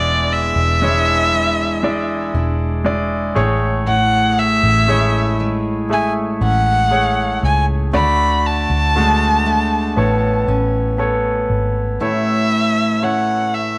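A tender, emotional pop excerpt at a slow 59 BPM in A major opens with an expressive bowed violin singing with vibrato and portamento over a clear, intimate concert grand piano that sits up front, with deep bass, long sustain and audible action noise. Beneath them, a full-bodied jumbo steel-string acoustic guitar fingerpicks arpeggios on fresh strings, while a dark, round, foam-muted electric bass anchors the low end until it stops at 12.0 s, leaving violin, piano and guitar for the closing moments. The chords move from E7 through Amaj7, D and Aadd9 before settling on A, wrapped in a moderate echo-chamber reverb with a small-room feel.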